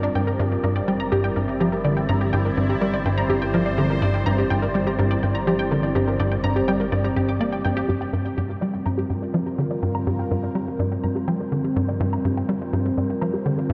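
A bright, sawtooth-based resonant pad holds sustained chords over a punchy, dark sequencer bass riff, while a lo-fi, detuned pluck spins chorused, delayed arpeggios and an airy, wind-like tuned noise texture fades in far in the background. This hypnotic, expansive ambient space music drives along at 124 BPM in G dorian. A pulse-width-modulated analog drone sits low on G1 from 0.8 to 7.9 seconds, after which a filter sweep colours the arpeggio, all set in a vast cathedral reverb.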